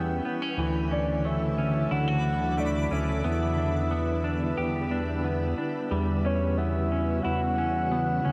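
A fat, saturated analog bass sits up front in this melancholic, ethereal dream pop excerpt at 90 BPM in E dorian, anchoring a clean, hollow-body electric guitar playing arpeggios and a shimmering, slow-attack ambient pad holding sustained chords through Em6, Dmaj9, Em7 and Em69. Over them, a soft, round, octave-layered synth lead carries the melody with chorus, vibrato and tape echo, its tone dark yet full. A brief twinkling granular texture sparkles in from 2.2 to 2.6 seconds, and a moderate shimmer reverb with a long 5.8-second tail bathes the mix.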